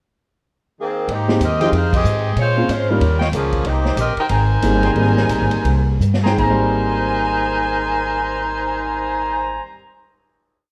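Big band swing with a joyful, swinging lilt, this short complete piece opens with the saxophone section alone on a pickup bar before bass and drums join at 1.1 seconds, followed shortly by piano and trumpets. The saxophones carry a motif-based melody in four-part block harmony with vibrato, sounding warm and roomy. Underneath, a woody upright bass walks, and the drum kit keeps a ride cymbal pattern with a punchy kick and medium-tuned snare. A clear, intimate grand piano comps in syncopated rootless voicings with its action noise audible, while the trumpet section adds syncopated stabs in drop-2 voicings and the band hits an accent early on. The tempo slows from 3.6 seconds, a drum fill leads into a held final chord at 6.4 seconds, and the recording carries a light reverb and the worn, warbling pitch drift of old cassette tape.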